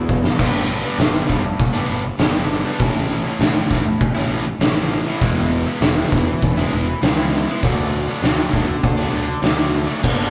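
Quiet-loud alternative rock with a cathartic, bittersweet mood, this short section cut from a longer piece moves in a straight 4/4 feel through G, A, E and D. An oversized, low-tuned acoustic drum kit opens with a brief fill before the main section arrives at 0.4 seconds, its fat snare, boomy kick and dark cymbals sounding gritty and saturated up front in a bright stone room. A raw garage guitar carries the riff, double-tracked, picked and overdriven, with a warm tone sitting prominently in the mix. Beneath it, a fingered electric bass runs through fuzz and overdrive, growly and punchy yet tucked into the background. Light reverb and a rough rehearsal-room sound give the whole passage an unpolished, live-in-the-room immediacy.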